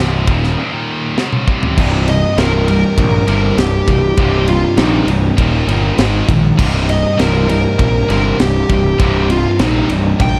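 Relentless and epic, this heavy metal excerpt in C minor pushes ahead at 100 BPM. Two high-gain, distorted rhythm guitars, one of them scooped, play a riff in the background beneath an up-front, growly, punchy fuzz bass and a tight studio drum kit with a high-tuned snare, which breaks and fills before 1.8 seconds. At that point an overdriven, double-tracked hollow-body guitar joins the riff, and from 2.1 seconds a dark, bluesy lead guitar with distortion and tape echo takes a solo over chords moving from Cm through Eb5 and Ab5 back to Cm, set in a warm production with studio reverb.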